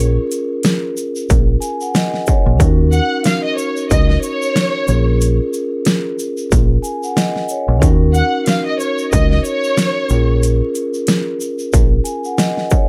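Tough and dark, this swung boom-bap hip-hop excerpt sets a distorted, layered dubstep drum kit with a huge snare and metallic hats over a round, amped fingered electric bass, mellow soft-mallet vibraphone accompaniment filtered through cassette tape and a grainy egg shaker in the background, while a lush bowed violin section with expressive vibrato carries the melody from 2.9 to 10.4 seconds over Bbm7 and Ebm7 in a dry mix dusted with vinyl crackle.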